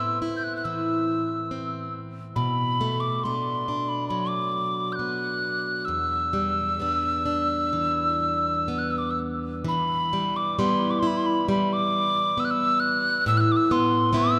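Bathed in a wet cathedral reverb with a long 5.1-second decay, this short excerpt of a Celtic slow air unfolds in E minor at a rubato 60-70 BPM in 4/4, carrying a mournful, longing mood. A hollow, airy metal tin whistle sits up front with the melody between B5 and G6, its tongued notes marked by chiff, vibrato and lifted highs. Beneath it, a picked plugged-in steel-string acoustic guitar, also up front and warm in tone with audible finger squeak, moves through Amadd9, Bm7 and Em7 before a repeat of the phrase begins at 9.7 seconds.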